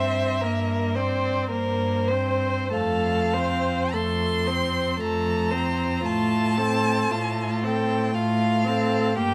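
A slow, romantic classical movement for string quartet in 3/4, this serene, warm fragment moves with a flexible rubato feel through a moderate recital hall reverb, captured by close, detailed microphones. The first violin carries an expressive, rich melody with vibrato and portamento, above a smooth, even second violin line, while a somewhat distant viola fills in the accompaniment. A clear, focused cello sits up front on the bass, with all four bowed parts sounding together from the opening to 9.3 seconds.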